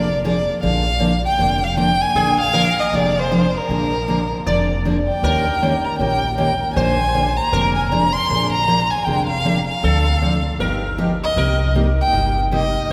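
A bowed violin sits up front with a soft-attack, vibrato-laden and expressive melody full of portamento, leading a charming, swinging acoustic string swing tune at 156 BPM in Bb mixolydian, where a bright, buzzing sitar adds a shimmering second line, a full-bodied picked steel-string acoustic guitar supplies warm accompaniment, and a woody, thumpy pizzicato upright bass on gut strings anchors the low end, all bathed in the long, wet reverb of a cathedral-like hall.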